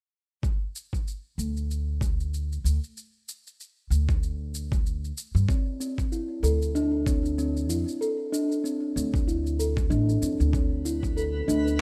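A gritty, overdriven electronic kick and a layered, produced shaker open this hypnotic, earthy organic downtempo fragment at 0.4 s, with a swung sixteenth feel and a rough home-demo sound that carries little reverb. A woody pizzicato upright bass soon joins up front, and at 5.5 s a ringing, meditative steel tongue drum played with firm rubber mallets adds delayed arpeggios as the harmony settles on D7sus2, later moving to Cmaj7/D. From 11.0 s, a faint, sparkling granular texture with an octave-up shimmer drifts in underneath.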